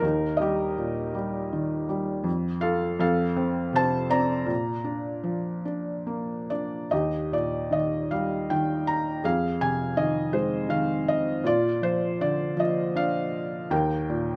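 Calm and peaceful, this 14.4-second excerpt of lyrical classical solo piano unfolds in a rubato 3/4 at 69-84 BPM, tuned to A4 = 438 Hz, with a felt-muted upright piano sitting soft, mellow and intimate up front in a dry, closely miked, detailed sound, moving from Bb major to Eb major at 6.9 s as gentle chords pass through Eb, F, Bb, Fm7 and back to Eb.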